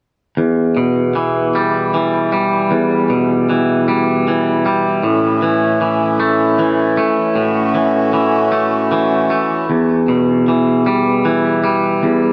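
Brooding and melancholic, this rock fragment at 77 BPM in 3/4 moves through E dorian, with a clean, twangy electric guitar picking compressed, up-front arpeggios through tape echo from 0.4 to 12.3 seconds. A reedy, breathing pedal harmonium holds sustained chords from 5.0 to 9.7 seconds as the harmony shifts from Em to A and back to Em. A lush hall reverb with a long 3.2-second tail soaks the whole room.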